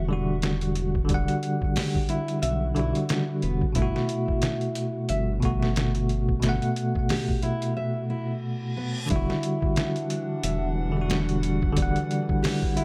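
Brooding and dark, this trip hop excerpt opens on a bell-like tine electric piano with tremolo over a deep, rumbling detuned saw bass, a faint flickering grainy texture, and a gritty, pitched-down sampler-style drum kit with a thumpy kick, swung sixteenths and small room ambience. A fingerpicked nylon-string guitar enters at 1.8 seconds playing arpeggios through tape echo. After a break from 7.8 seconds marked by a short electronic reverse cymbal, a warbly, lo-fi tape-like pad with chorus, phaser and sampler grit brings in sustained chords at 9.6 seconds, while the mix stays dry and close with the piano and drums up front.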